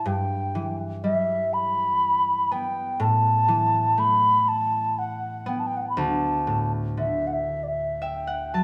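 Celtic folk in a nostalgic, pastoral mood, this short passage drifts in a rubato 6/8 at about 38-42 dotted-quarter beats per minute, with a mellow, woody baroque flute singing the melody up front with pure tone, vibrato, crisp attacks and softened highs over a ringing, fingerpicked concert harp that moves through Em/G, Asus2 and D before adding a fill at 7.5 seconds, all set in a moderate recital-hall reverb.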